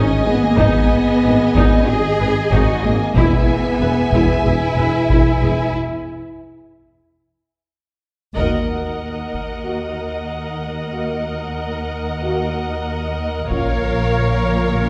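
A straight 4/4 pulse at 93 BPM drives this dark, relentless stretch of epic orchestral film score, with a compressed, saturated taiko ensemble struck with heavy sticks entering almost at once. The harmony moves from G#m to E before a break at 5.7 s, where a drum fill leads into a full-band accent as the music settles into Eb minor at 8.4 s. A distant, dark studio violin section carries the melody with vibrato and portamento. Alongside lush, smooth symphonic violins on a second line and even, bowed violas in the accompaniment, a roomy French horn section holds sustained chords. Cellos and a shadowy double bass section anchor the low end, joined early on by a close-miked tuba sitting in the background. The taiko return near the close, and a very quiet, articulate timpani fill on hard mallets arrives at 13.5 s over a Bbm chord, all heard from further back in a reverberant scoring stage as a cut from a longer piece.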